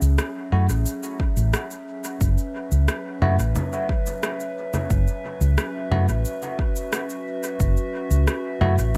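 An echo-heavy, dry-roomed mix opens this meditative ambient dub fragment at 89 BPM in F# minor, where a warbling, lo-fi pad with chorus and its own reverb holds a nostalgic F#m7 chord over a round, dark hollow-body electric bass sitting up front. Overdriven electronic cabasa, rim click and congas run through dub echo from the start, while a bell-like tine electric piano adds clean, phased stabs from 0.5 seconds. A deep, layered electronic kick with overdrive thumps forward between 1.2 and 7.7 seconds.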